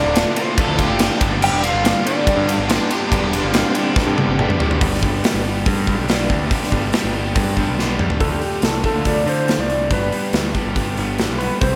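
This driving, gritty classic rock excerpt opens on a twangy, slide-played lap steel melody with slapback echo, over a thick bed of riffing guitars: a distorted, compressed electric, a hollow-body semi-hollow, and a crunchy, double-tracked part. Beneath them sit a growling bass with overdrive and a shimmering, octave-doubled fingerpicked twelve-string acoustic, with the big rock kit's punchy kick and bright cymbals up front from 0.2 s. Early on, a very quiet smooth lead line plays until 4.4 s, a second guitar line coloured by phaser and slapback sits in the background from 0.4 to 4.0 s, and a very quiet, shouting tonewheel organ with key click and slow rotary holds until 4.8 s. The lap steel returns at 8.2 s, and the mix sits in wet scoring-stage reverb for a big arena sound.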